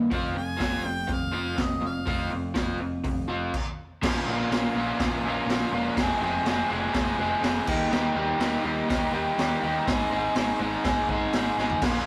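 An overdriven, double-tracked electric guitar riff and a growling picked bass with its own overdrive open this gritty, swaggering garage rock excerpt in F minor at 123 BPM, joined at once by a raw, saturated drum kit with a punchy kick and a rolled-off top. A clear harmonica with light vibrato and scooped notes sits up front from 0.4 to 2.3 seconds, before the band hits a stop from 3.5 to 4.0 seconds and moves through Bbm, Fm, Eb and Ab. A drum fill lands at 11.6 seconds, all captured as a rough rehearsal-room recording in a moderate stone room reverb.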